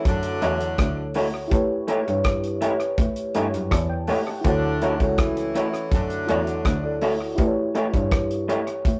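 A glassy FM electric piano with a bell-like attack provides the accompaniment in this short lovers rock reggae clip, its chorus and tape echo adding shimmer to the Dmaj9 and A7 chords, and it plays a fill from 3.4 to 4.5 seconds. The mood is smooth and romantic at 82 BPM in a straight 4/4 in D major. A damped 70s drum kit sits up front with a tight kick, hi-hat and rim click, its dark, dry tone carrying a touch of tape echo. A bright bowed cello, one player with vibrato, holds the bass from a distance, while an electric guitar through a small old amp adds compressed, slightly broken-up stabs with spring reverb. A mellow horn section in octave doubling carries a tight second line until 7.0 seconds. The rough rehearsal-room recording has a moderate studio reverb and warm saturation, and the piece is cut from a longer work.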